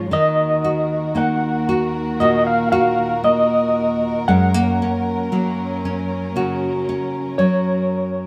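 Reflective and intimate, this slow acoustic folk-pop ballad in Eb minor moves at 58 BPM in a straight 4/4, shifting from Ebm to Gb at 4.3 seconds in a brief passage cut from a longer piece. Up front, a twangy, slightly broken-up electric guitar through a small old amp carries the lo-fi, compressed melody with tremolo, while a full-bodied, fingerpicked nylon-string guitar lays down deep classical accompaniment. Beneath them, more quietly, a close, muted chamber string section holds veiled, bowed chords with vibrato and a soft attack, all set in light reverb.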